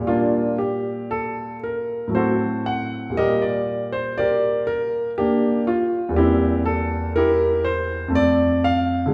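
Heard from further back in a recital hall with a wet reverb and a 1.5-second decay, this short cut from a longer baroque-style suite movement sets a smooth, vintage-toned grand piano up front, playing alone from 0.0 to 9.1 seconds across a range from E2 to F#5. The mood is grave yet flowing, moving at 60 BPM in 3/4 with a rubato feel in G minor, tuned to A4 = 441 Hz. Its harmony passes from Gm/Bb through F#dim/A and back to Gm/Bb, then to C7/E before arriving on F at 8.2 seconds.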